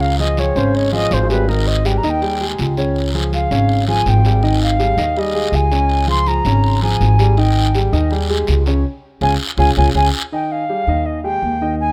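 An airy, reedy silver flute with tape echo solos through this sunny, sophisticated Afro-Cuban jazz fragment, backed by a warm grand piano, a woody, up-front pizzicato upright bass and a raspy, close guiro that drops out at 10.0 seconds, with a band accent arriving at 8.8 seconds and the whole captured in a rough, small-room home-demo sound.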